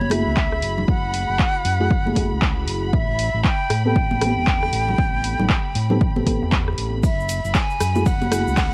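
Deep house cut from a longer piece, moody and deep at 117 BPM in F# minor with a swung sixteenth feel, where an airy silver concert flute carries the melody through tape echo over a round, overdriven fingered electric bass, while a mellow FM electric piano with chorus plays dark stabs, a rich bowed violin section holds a high vibrato texture, all three pumping to the sidechain, and an up-front overdriven electronic kick, a dry analog drum machine with handclaps, hi-hat and rim click, and hard-handed congas in the background drive the groove, until a big rock drum kit's hi-hat and snare and a grainy egg shaker join faintly at 7.0 s, all set in a small, gritty room with vinyl crackle over F#m9 and Am9 chords.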